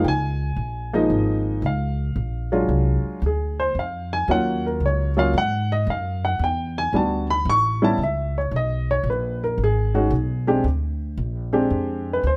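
A swung 4/4 at 113 BPM carries this smoky jazz fragment in Bb minor, cut from a longer piece, with a dark, mellow baby grand taking the melody and soloing across the full 12.4 seconds, its short sustain and audible action noise giving it an intimate, natural feel. Beneath it, a pizzicato upright bass with steel strings plays throughout, woody and thumpy, and both instruments sit up front in a dry, close sound. The harmony moves from Db6 through Ebm9, Em7 and B6 before settling on Bb13.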